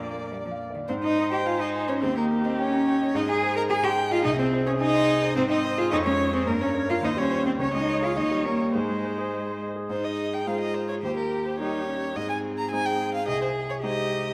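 Quick classical-period piano quartet music in Ab major at 107 BPM in a straight 2/4, cheerful and spirited, heard as an excerpt of a longer movement whose opening phrase returns at 9.9 seconds. A close, expressive violin carries the melody with vibrato, a soft attack and portamento, while a rich cello, the strongest of the strings, sings a second line with its own vibrato and sliding portamento. A warm, focused viola with a smooth top and a bright, brilliant concert grand, up front with deep bass and long sustain, fill in the accompaniment, all set in a wet scoring stage reverb with a 2.0-second decay.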